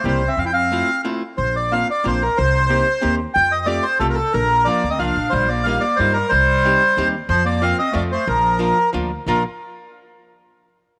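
Set in a light reverb and studio ambience, this excerpt from a longer piece is a nostalgic, charming musette waltz in Bb major at 182 BPM in 3/4, tuned to A4 = 445 Hz. A reedy, airy bandoneon carries the melody up front, while a bright, smooth-topped clarinet in classical style adds a second line that drops out after 1.0 seconds and returns at 4.7 seconds. Beneath them, a dark, clean hollow-body archtop guitar plays picked accompaniment, and a woody, thumpy pizzicato upright bass on gut strings holds the bottom through chords such as Cm7, Ebadd9/Bb and Fsus4.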